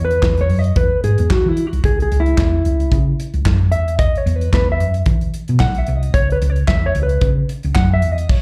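Joyful and glamorous, this short disco snippet at 112 BPM in 4/4 with a light 16th-note swing sets a clean, mellow electric guitar solo with slapback echo over a round, punchy hollow-body short-scale fingered bass and an airy, polished studio drum kit of kick, medium-tuned snare, hi-hat, handclaps and crash cymbal, all heard as a live gig through a venue PA with club reverb in a small room as the chords move between E and C#m.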